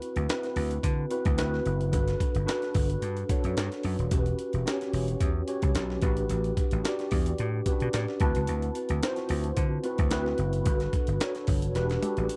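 Urban and slick, this short excerpt of polished 1980s jazz-funk pop moves at 110 BPM with a light swing on the sixteenths. A gritty, compressed, pitched-up breakbeat kit with a thumpy kick and high-tuned snare sits up front beside a punchy, amped slap bass, while a mellow, clean tine electric piano with ensemble chorus comps through chords like D13, Gmaj7 and Em69. The piano adds a brief fill around 7.7 seconds and the drums close with a fill at 11.8 seconds, all captured in a dry, close 1970s-style studio sound.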